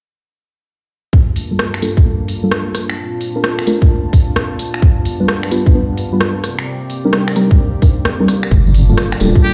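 Heard through a big sound system in a bare room with large studio reverb, this bouncy, soulful two-step UK garage excerpt swings over a tight, up-front electronic kick and an overdriven analog drum machine of finger snaps, hi-hat and rim click, while a smooth, detuned pad with chorus, tremolo and sidechain pumping holds chords alongside deep, mellow ring-modulated stabs carrying dub echo and a filter sweep, before a dark wobble bass and a distant, jingly tambourine join at 8.5 seconds and a buzzy metal-muted trumpet appears at 9.4 seconds.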